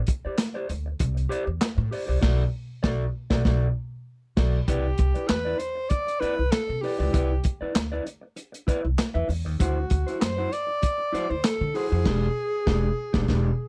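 Cool and driving, this funk passage from a longer piece opens on a gritty, saturated breakbeat drum kit of tight kick, snare, hi-hat, handclaps and dark crash cymbal, with a thumpy, woody upright bass out front and a mellow, clean fingered electric guitar playing a rootless Am7 moving to Bm7. At 4.7 s a breathy alto saxophone takes a clear, vibrato-laced solo with a slapback echo over Cmaj9, D9 and a closing E7#9. Band accents hit from 2.2 s and again near the end, all captured in a dry, close 1970s-style studio sound.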